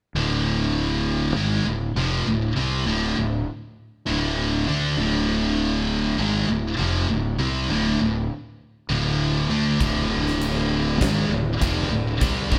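A stone room's reverb surrounds this driving, aggressive hard rock excerpt, which sounds like a band playing live together. A growly, fuzz-soaked fingered bass and two up-front guitars, one scooped and bright with high-gain distortion and the other sludgy and overdriven, open at once on a single D minor chord in straight 4/4. At 9.8 s a huge arena drum kit crashes in with a punchy kick, fat snare and bright cymbals pumping in the hall.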